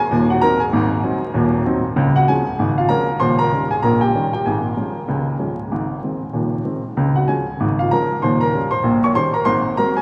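A playful, jaunty ragtime piano excerpt in Db major at 96 BPM, where a clear, woody upright piano with short sustain plays solo and up front across a broad range from Eb1 to Db6, its swung 2/4 lilt wrapped in a long cathedral reverb with vinyl crackle and a dulled top end, as if heard in a church or concert hall.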